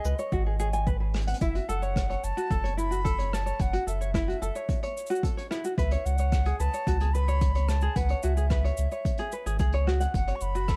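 A reedy baroque flute carries the melody over thumb-plucked tenor ukulele arpeggios, both touched with tape echo, while a round sine sub bass sits up front and a muffled, lo-fi brush kit adds cabasa, hi-hat and rim click. A soft, tape-warm electronic kick joins at 0.3 seconds, just before a brief drum fill at 1.1 seconds. This delicate, wistful folktronica fragment moves between suspended and minor seventh chords in a small, dark room.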